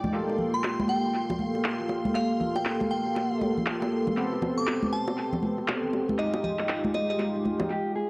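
A glossy, retro chorused polysynth sits up front, playing stabs with a pulse-wave and sawtooth edge and a sub octave beneath, its filter sweeping as tape echo trails each hit. This short deep house fragment moves at 119 BPM in 4/4 with a 16th-note swing, and its mood is hypnotic and smooth. Beneath the stabs, a deep, moody ambient pad holds sustained chords in the background, detuned and chorused with its own reverb, while a shimmering, warbling string machine of violins adds a faint vintage texture high above. Bright, close congas and bongos played with soft hands mix with layered electronic handclaps that carry a filtered snare and a small room ambience. A crystalline FM synth bell carries the melody from 0.5 s, colored by chorus and phaser, and a clean, dark, fingered electric guitar slips in at 7.7 s just as the fragment ends. The harmony drifts from Gm9 to Am9 and then Fm9 in an echo-heavy mix with the soft grain of cassette tape.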